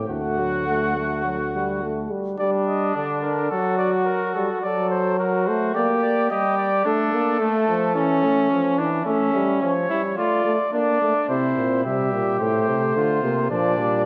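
Lively and elegant, this short excerpt from a longer classical brass canzona moves at 108 BPM in a straight 4/4, its imitative writing shared among four players in a wet concert hall. The trumpet carries the melody with a light vibrato, while the flugelhorn, warm and roomy, sings a second line beneath it from 0.1 seconds to the end. A clear euphonium fills in the accompaniment from a slight distance, and the bright, punchy bass trombone anchors the bass only at the opening and again from 11.3 seconds. The harmony begins on D, turns through G minor and a stretch leaning on A, then closes by moving through C and F toward B-flat. The hall's reverb, lasting about 1.8 seconds, wraps the ensemble in a dark, warm production.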